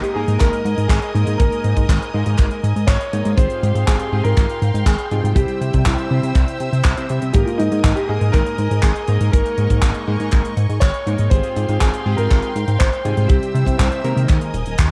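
Sunny and danceable, this italo disco cut moves at 121 BPM in a straight 4/4, set in Ab major and drawn from a longer piece. A dark grand piano carries the melody through a tape echo, while a distant, smooth symphonic string section holds bowed chords with light vibrato high above. A glossy, chorused polysynth adds sawtooth and pulse-wave stabs with a filter sweep until 14.5 s, and the up-front synth bass, built on a pulse wave with ring modulation and a filter pluck, enters at 0.2 s and sits prominently in the mix. A tight, polished funk drum kit with handclaps and hi-hat plays from the start, and a dry, airy kick arrives at 0.4 s, both wrapped in studio ambience. The harmony circles from Absus2 through Fmadd9/Ab to C before closing on Ebsus4, and the whole has the close, dry feel of a 1970s-style studio recording dusted with vinyl crackle.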